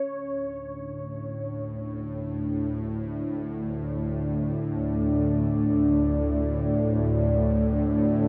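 A deep, warbling synth pad opens this cavernous, desolate dark ambient drone in free time, holding sustained chords around D5 with chorus and a vintage tinge as it fades in. At 0.8 seconds a tense, string-like bowed drone with detuned sawtooth grit, a noise layer and vibrato enters low beneath it, also fading in and sitting up front. The 8.3-second excerpt is steeped in a huge, wet reverb with an 8.0-second tail, giving the piece a dark, warm production.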